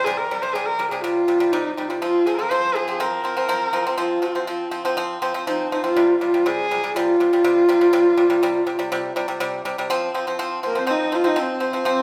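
A lush studio reverb surrounds this live, one-room performance, cut from a longer piece of solemn, vast Mongolian folk music. Up front, a husky, focused horsehead fiddle bows the melody with vibrato and portamento, beside a dry, percussive pipa whose fingerpicked arpeggios sit low. The music moves into a new section at 9.9 s, and shortly after, at 10.7 s, a reedy bamboo dizi with a buzzing membrane adds a tongued second line from the background.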